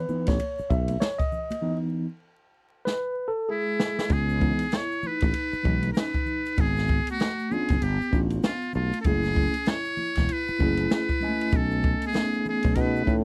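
A dry, close 1970s-style studio sound with vinyl crackle frames this nocturnal, cool jazz-hop excerpt at 97 BPM in C# minor, where a clean tine electric piano opens alone before a growly fretless bass, a boomy open jazz kit with dark cymbals and background congas and egg shaker join. A drum fill beginning at 2.9 seconds carries through the entry of a buzzy, brilliant muted trumpet melody with scooped notes and light vibrato from 3.5 seconds, joined by a mellow soft-mallet vibraphone line, over chords moving from C#m9 through G7#11 to B13.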